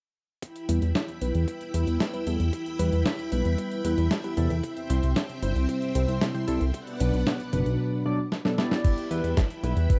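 A thumpy, gritty electronic kick, a tape-warm soul sampler kit of crash, hi-hat and medium-tuned snare, and lush, full-bodied string machine chords with ensemble chorus open this bittersweet, danceable 114 BPM italo disco excerpt in E minor. They are soon joined by a glossy chorused pulse-width synth bass and bright stabs from a chorused polysynth that carries a filter sweep and tape echo. Everything moves through Em, C and Bm in a dry, close 1970s-style studio sound until a drum fill at 8.3 seconds returns the music to Em at 8.8 seconds.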